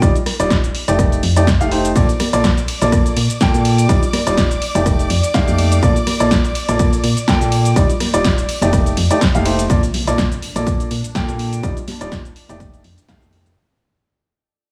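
Euphoric and feel-good, this piano house excerpt rides a clear, woody upright piano riff with tape echo and sidechain pumping over a round FM bass, a punchy electronic kick, and an analog drum machine of snare, hi-hat, ride, rim click and cabasa, with a light 16th-note swing. From 2.0 s, a rich, vibrato-laden violin section holds sustained chords in the background, and very quiet tambourine and congas ring in as the harmony cycles through Ebmaj9, F13 and Bbmaj7. At 9.7 s, a very quiet electronic impact lands as the track fades and a filter sweeps the bass, while a blurred granular cloud pad drifts in at 10.3 s within a small-room ambience.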